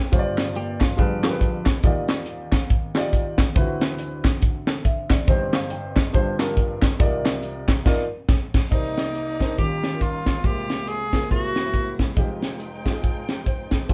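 A band playing live in one room, with moderate ambience, delivers this solemn, fervent stretch of uptempo gospel in C minor at 140 BPM with a swung feel, tuned to A4 = 445 Hz. A dark, woody upright piano and a crisp fusion drum kit with a punchy kick and high-tuned snare carry the accompaniment up front, while close, dry group handclaps sit in the background until 7.8 s and a clean, compressed electric guitar adds a brief second line near the start. After a band accent, a breathy, whispered tenor saxophone takes an intimate jazz-style melody from 8.7 s, as a bowed studio string section with vibrato and portamento sustains chords behind it over harmony moving from Cm9 toward Fm9.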